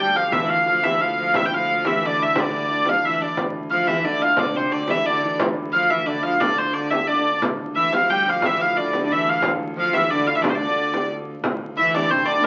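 Medieval dance in D minor at 178 BPM in a straight 3/4, mysterious and ancient, cut from a longer piece, with a nasal, boxy hurdy-gurdy carrying the melody up front over a shimmering hammered dulcimer and an intimate, airy-bowed viola da gamba on second lines, a pure, floating viola da gamba drone on D2 in the background, and a saturated frame drum struck with hard hands entering at 0.3 s, all heard through a club reverb on a very old 78 rpm record with vinyl crackle and a muffled top end.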